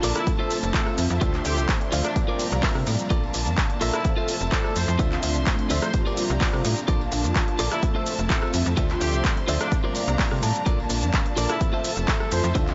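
A punchy analog kick drum sits up front from 0.3 seconds, driving this sunny, funky slice of filtered disco house at 127 BPM in a straight 4/4. Beside it, a snappy FM bass with a metallic attack fills the low end. A punchy analog drum machine adds handclaps, hi-hat, rim click and shaker, with its hats, percussion and cymbals pumping against the kick. A very quiet, close and dry tambourine layer blends tube shaker and group handclap. Mellow synth brass carries the chords in a round, detuned, dark tone with chorus, phaser and vibrato. Rich chamber strings sustain in the background, and a compressed, clean electric guitar picks a riff, breaking into a fill from 9.7 to 10.7 seconds. Over the loop of Fmaj7, Dm9, C9sus4 and Bbmaj7, a distant, roomy horn section plays a very quiet melody with light vibrato. The dreamy mix is soaked in huge ambient reverb, and its top end is filtered off above 7.7 kHz, giving the whole passage a hazy, muffled glow.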